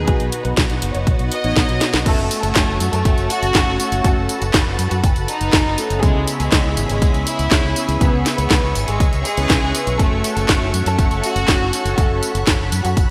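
A lush, detuned unison pad, fat wave-folded synth brass stabs with chorus and delay, and a punchy fingered electric bass with an envelope filter open this sunny, playful italo disco excerpt at 121 BPM, tuned slightly flat to A4 = 437 Hz. From 0.1 s an overdriven, punchy electronic kick and an up-front house kit with a cracking snare, bright hats, handclaps, tambourine and crash join in. A biting, intense violin section carries the melody through a digital delay, while a drum fill at 1.8 s leads into a longer passage that moves from F#m through C#m7 and back to F#m, all in a bright 1980s-style digital production with a lush hall reverb.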